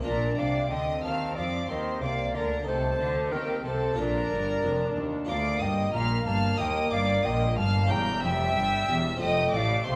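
Dramatic and driving, this short cut from a baroque-style concerto movement in a straight 4/4 pulse sets a hollow, pure-toned flute with vibrato alongside a high violin section on the melody, while a second, closely placed violin section adds a supporting line. Violas, a nasal-edged cello section and double basses, all with gut-string, period-style colour, fill the accompaniment and bass beneath a full, Flemish-style harpsichord sitting in the background. A wet recital-hall reverb surrounds the ensemble as the harmony moves from Bb through Eb and a diminished chord to F near 9.2 seconds.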